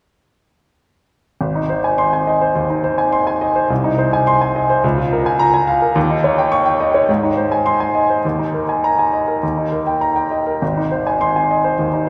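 Heroic and sparkling, this rubato classical virtuoso piano study in Ab major at 105 BPM features a clear, intimate baby grand piano playing solo and up front from 1.4 to 12.1 seconds, spanning Ab1 to Db6 with audible action noise, set in a wet church reverb as a brief cut from a longer piece.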